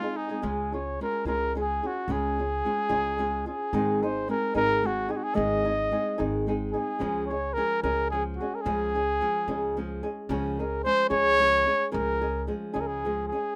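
Mexican folk mariachi in a straight 6/8, romantic and festive, with a mellow trumpet carrying the classical-style solo melody up front, its light vibrato and soft attack floating over the accompaniment. A fingerpicked flamenco guitar on old strings sits close by with a woody, acoustic tone, while a thumpy pizzicato upright bass on gut strings enters at 0.4 seconds. The short fragment of a longer piece has a dry, rough home-demo sound.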